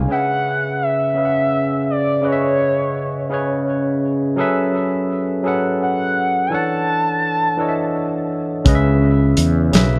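Yearning and sultry, this short excerpt from a longer piece is a slow R&B groove in 6/8 at 56 BPM, moving through C#m7, F#m11 and E13sus4 before returning to C#m7. A barky tine electric piano carries the accompaniment throughout, its bright tone lightly overdriven through a combo amp and trailed by tape echo. Over it, a gliding portamento lead sings the melody from 0.1 to 8.3 seconds: a smooth, detuned blend of sawtooth, sine and triangle waves, wave-folded, with vibrato, a fast attack and long sustain, thickened by chorus and its own tape echo. A growly, punchy fretless electric bass sounds only briefly at the very start, then returns at 8.7 seconds alongside a small-room soul drum kit, whose tight kick, medium-tuned snare and hi-hat have a rolled-off top. Every part sits up front in an echo-heavy mix with light reverb.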